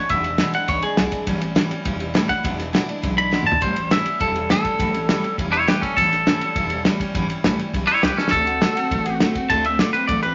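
A twangy electric guitar carries the melody up front, its bright, clean, compressed tone ringing out over an upbeat, rowdy rockabilly groove at 204 BPM in A mixolydian. Beneath it, a picked steel-string acoustic guitar with a full-bodied dreadnought sound fills in the accompaniment, while a pizzicato upright bass adds a woody, thumpy low end from 0.1 seconds. The cloth-damped drum kit sits up front with a dry, dark, thuddy character, a tight kick, medium-tuned snare, dark ride cymbal and toms, and it drops in fills at 3.3 and 8.2 seconds. The harmony moves between E7 and A7 before shifting to D7 and Dm7 near the close of this fragment cut from a longer piece. A wet studio reverb surrounds the band, and the overall sound has a rolled-off top end.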